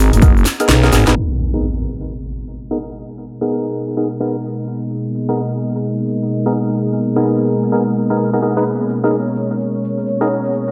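A growling, thick FM bass and a house drum kit with a cracking snare and overdriven hats drive the opening second of this aggressive, swaggering bass house excerpt at 128 BPM in G# minor with swung 16ths, alongside hollow, chorused organ stabs with tape echo and a grainy tube shaker in the background, before an impact at 1.2 s ushers in a deep, detuned analog pad whose filter sweeps until 10.7 s through a dreamy, reverb-soaked mix.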